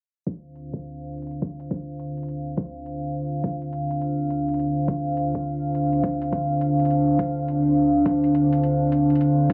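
A dark analog pad stands out most, holding sustained chords from D3 to F5 up front, its deep, detuned tone blending square, sawtooth, triangle and sine waves with a sub octave and a wave-folded edge, softened by a slow attack, long release, lush chorus and sidechain pumping. This is a gritty, playful glitch hop excerpt in D minor at 104 BPM in 4/4, swung at 62% on the 16ths, resting on a Dm7 chord. An overdriven electronic kick drum knocks up front from 0.3 seconds, layered and re-recorded in a small room, with high-pass filtering on the kick and its room sound. Behind it, an overdriven electronic hi-hat with a warm character sits far back in the mix, also re-recorded in a small room. A filter sweep runs through the whole passage, and a lush hall reverb with a 2.9-second decay bathes the bright, 1980s-style digital production.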